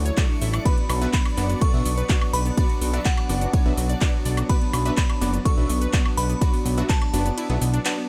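Opening on a hopeful, uplifting progressive house groove, a crystalline FM synth bell melody rides over a smooth detuned analog pad, a fat, thick sawtooth bass and a faint reversed, dreamy granular texture. A round analog pluck arpeggio with cassette-tape colour, a mellow supersaw stab in the background, a house kit of handclaps, metallic hi-hat, ride, shaker and woodblock, and a punchy up-front electronic kick join almost at once. The bell, pad, bass, pluck and stab pump to the sidechain in a dry mix until the kick drops out at 7.4 seconds.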